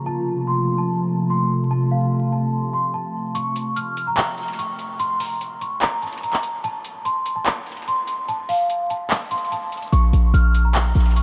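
A dreamy, reverb-soaked mix with vinyl crackle frames this brooding, menacing half-time trap excerpt at 146 BPM, where a bell-like, delicate celesta melody rings through lush chorus and analog delay over a glassy FM pad's sustained F chord until 3.3 seconds, then a tape-toned analog drum machine with metallic hats and handclaps carries the break before a punchy, heavy 808-style bass lands on Bbm at 9.9 seconds.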